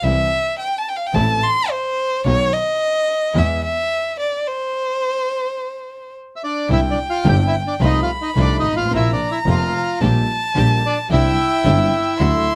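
Close, detailed microphones and light reverb give this excerpt of a playful, elegant tango an intimate, present sound. Moving in 4/4 at 109 BPM with a rubato feel, it opens with a violin solo, the boxy, expressive violin up front with vibrato and portamento. A warm grand piano provides accompaniment, a clear double bass bowed sul tasto carries the bass with a pure, floating tone, and a lush, very quiet studio string section adds distant stabs. A stop at 4.5 s breaks the flow, and the reedy, dark bandoneon enters at 6.4 s, dry and full at the front of the mix, to take the melody. From 6.7 s the music settles in C major, moving through chords like Cadd9, F7/C and Bbsus2 while the violin continues as a second line.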